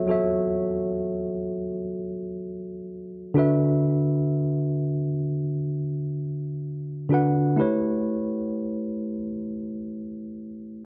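Worn, warbling cassette tape gives this short R&B fragment a hazy drift in pitch, softened further by light reverb. A lone tine electric piano sits up front, mellow and slightly out of tune, moving from F#m7 to D6 at 3.4 seconds and A7 at 7.6 seconds. The mood is dreamy and smooth, unfolding in free time.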